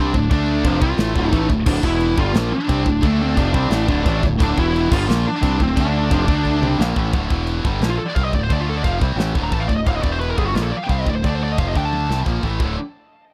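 A growling, punchy fingered bass sits up front in this relentless, heavy metal excerpt in D minor at 176 BPM, driven by a polished, airy studio kit with a tight kick, medium-tuned snare, toms, and crash and china cymbals. Three picked guitars carry the riff over Dm and E5 chords: a crunchy, double-tracked overdriven guitar that drops out at 7.1 seconds, a bright, heavy high-gain guitar, and a distorted one further back. A dark, high-gain lead guitar carries the melody and then takes a solo from 7.1 seconds, with drum fills closing each section, all in a dry, close 1970s-style sound with little reverb.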